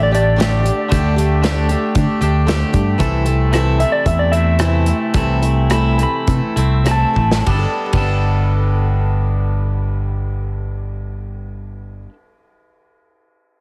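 A straight 4/4 pulse between 96 and 115 BPM, slowing from 3.0 s, drives this nostalgic, open-road folk and heartland rock excerpt in G major, where a dark, clean lap steel carries a slide solo that ends at 7.5 s over a round, up-front fingered electric bass, a boxy picked swing-style acoustic guitar, a bright, twangy compressed electric guitar riff and a small-room country drum kit with punchy kick that plays a fill at 7.2 s, as the chords move from Dsus4 through Am/C to Gadd9, heard through a heavily compressed, radio-style studio sound.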